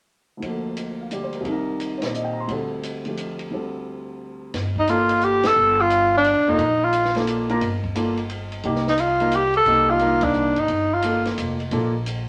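This moody, cool small-group jazz piece in G minor swings at 176 BPM in 3/4. It opens at 0.4 seconds with an intimate grand piano, its action noise audible and its chords ringing with long sustain, over a compact cocktail kit with dark cymbals, a high-tuned snare and a tight kick. After a break, a woody, thumpy pizzicato upright bass on gut strings enters at 4.5 seconds, and an up-front tenor saxophone takes the melody, whispered and mellow with vibrato, soft attacks and scooped notes, while band accents punctuate the passage and a wet studio reverb surrounds this cut from a longer piece.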